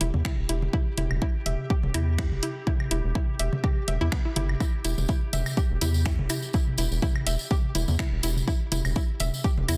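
A dense, heavily limited modern master with digital ambience carries this hypnotic, quirky minimal techno excerpt in E minor at 124 BPM with a light 16th-note swing, where a bright, detuned square-wave pluck riff with chorus, digital delay and sidechain pumping rides over a dark, rubbery bass that pumps up front, a dry, overdriven analog drum machine plays finger snaps and hi-hat, tape-warm electronic toms and claves ring through digital delay, a pulsing, tempo-synced gated texture holds G4 under chorus and reverb, an overdriven, layered punchy kick sits up front from 0.2 s, and a jingly acoustic tambourine joins at 4.6 s.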